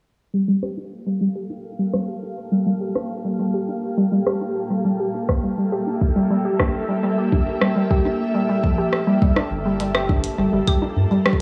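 Glitchy and cerebral, this short IDM cut moves at 103 BPM in a straight 4/4, sitting on a Gm9 chord in G dorian. A warbly, dusty pluck opens almost at once with mellow, nasal arpeggios coloured by chorus and tape echo, joined by a glitchy drum kit of claves, clicky hats and rim clicks that are low-pass filtered and thrown into digital delay. A granular cloud pad spreads blurred, detuned sustained chords with slow attack, its own reverb and a vintage 12-bit sampler grit, while filter sweeps move across the drums, pad and pluck through the opening stretch. A deep electronic kick arrives up front at 5.3 seconds, and after a drum fill a round, dark analog bass with a triangle-and-sine tone enters at 9.5 seconds for the closing passage. The whole mix sits in a lush hall reverb over small room ambience, worn down by cassette tape warble, pitch drift and a low-pass filter that give it a hazy, lo-fi finish.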